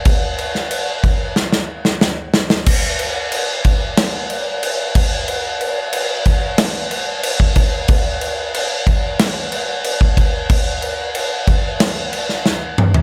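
A big acoustic rock drum kit opens this aggressive, heavy excerpt at 92 BPM in a straight 4/4, its punchy kick, medium-tuned snare, toms and bright crash cymbal sitting up front in a dry studio room, with a drum fill from 1.4 to 2.7 seconds leading into the next section and another fill closing it out at 12.5 seconds.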